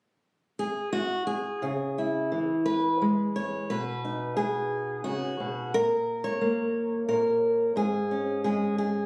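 This is a folk piece for solo fingerpicked steel-string acoustic guitar, intimate and melancholic in mood, moving in 3/4 at 88 BPM. The guitar enters at 0.6 seconds and plays until 9.1 seconds, its tone warm and concert-like, sitting up front in the mix. Its range runs from G#2 to C#5, and it is tuned slightly below standard pitch, to A4 = 435 Hz. A brief opening gives way at 1.6 seconds to a longer passage in which the harmony passes through a minor chord, an add9 chord, a chordless stretch and a suspended chord. Captured on a phone in the room, the sound carries light reverb and compression, and the passage is cut from a longer piece.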